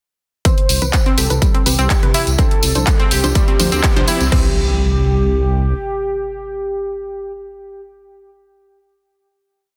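A punchy, up-front electronic kick drives this euphoric, expansive progressive house piece at 124 BPM in C major, pounding four on the floor through a build-up that runs from 0.5 to 4.3 seconds. Beneath it, a deep, rumbling detuned saw bass gallops in sixteenths with sidechain pumping. A layered big-room kit adds programmed hats, a clap backbeat and crash, while a jingly acoustic tambourine plays close hand-played sixteenths. A round analog pluck repeats a 16-step arpeggio sequence colored by chorus, cassette tape and tape echo, and a lush unison pluck sits in the background with dotted-rhythm chord stabs over Cmaj7 and Dm7/C as a filter sweep moves through the build. A velvety, smooth synth lead with vibrato, chorus and delay carries a repeating riff melody, a very quiet riser and impact mark the transition, and from 4.3 seconds a final Cmaj7 chord holds as the lead and unison pluck ring on to 7.3 seconds, framed by light digital ambience in a dense, heavily limited modern master.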